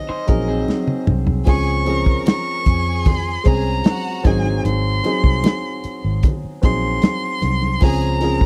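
This dry, close recording has the intimate sound of a 1970s soul studio, with little reverb and the drum kit sitting up front. Cut from a longer piece, it is a romantic soul passage in four, moving gently between Ab7 and Dbmaj7. A bowed erhu carries the melody, its smooth vibrato and portamento giving the tune a singing quality, while a grand piano with audible action noise plays the accompaniment. A slightly broken-up electric guitar plays a short picked riff at the very start, and a foam-muted fingered bass holds down a round, dark low end. The drums are smooth, with a tight kick and a rolled-off top, adding a fill around 0.7 seconds, while ringing congas sit in the background. From 1.5 seconds a focused studio string section enters with a lush second line.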